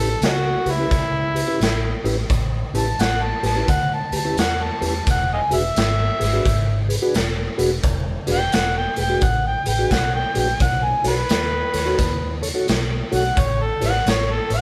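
Swaggering and soulful, this electric blues shuffle at 87 BPM swings on an overdriven, amplified harmonica that solos up front throughout, full of vibrato, tongue slaps and scooped notes in a jazz style. A mellow, flute-like tonewheel organ with key click and a slow rotary speaker sits under it, while a dark, round, foam-muted electric bass anchors the A9, E9, B9 and Aadd9 changes. A raw garage drum kit with a punchy kick, saturated tone and rolled-off top comes in at 0.2 s, and the band plays live in one room with moderate reverb and a faint mains hum.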